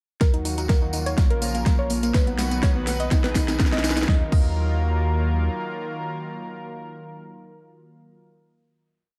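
A dreamy, bittersweet progressive house piece opens with a punchy, overdriven four-on-the-floor kick, a big-room kit with a huge snare and metallic hats, and hand-played tambourine sixteenths, all driving a build-up and drum fill. Beneath them, a round analog bass holds sustained roots, a lush detuned pad breathes with sidechain pumping, and a soft pluck repeats a sixteenth-note riff over a pedal note through chorus and dub echo. The drums drop away at 4.5 seconds and the bass at 5.5 seconds, leaving the pad and pluck to ring out a final chord in a dark production with light digital ambience.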